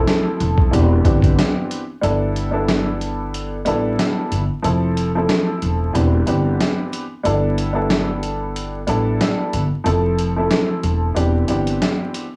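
A soulful, confident boom-bap hip-hop groove opens on an upright piano and a pizzicato upright bass together at 0.0 seconds, with the sampler-style drum kit arriving a moment later at 0.1 seconds. The tempo sits at 92 BPM in 4/4 with a gentle sixteenth-note swing, in G mixolydian, cycling through Fmaj7, Cmaj9/E and G69 chords. The upright piano is worn, woody and slightly detuned, filtered and colored by cassette tape as it plays accompaniment in the midrange. Beneath it, the upright bass brings a dark, thumpy gut-string tone up front, and the compressed, gritty drums pair a thumpy kick and medium-tuned snare with hi-hat, their sound re-recorded in a large room. A break begins at 2.0 seconds, the bass stops at 11.8 seconds, and the whole excerpt carries the feel of a home cassette recording with vinyl crackle, small room ambience and light reverb.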